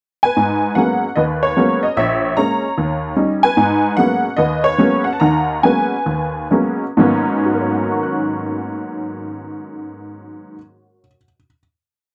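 Swung eighth notes in 4/4 drive this short solo jazz piece, which opens with a brief pickup before settling into a single strain that slows from 3.6 seconds to 7.0 seconds. The only instrument is a honky-tonk upright piano, heard from 0.2 seconds onward, its detuned, jangly tone giving the cool, late-night mood a vintage edge. A stride bass supports a motif-based melody built from song-like phrases, while close voicings carry a minor-key progression that moves through a half-diminished chord and a dominant seventh before returning home. At 7.0 seconds the piece arrives on a final chord that rings out to its close. The piano sits bright and up front in a dry, close studio sound with a 1970s character and very little reverb.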